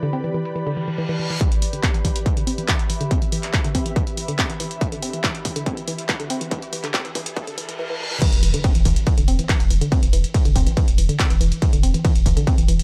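Dark and intense, this excerpt of driving peak-time techno runs at 141 BPM in E minor, opening with a woody, wave-folded pluck riff given chorus, tube saturation, delay and sidechain pumping, alongside a punchy analog drum machine of hats, claps, ride and crash, an ethereal detuned pad, and a brief, eerie, metallic drone that ends by 1.5 seconds. A distorted, overdriven kick enters up front at 1.4 seconds as a build-up with a riser, filter sweeps and reverse cymbals leads to the drop at 8.2 seconds, where an impact lands and a round sine sub bass joins on E. The production is dark and dry, with filtered hats and cymbals from a small room.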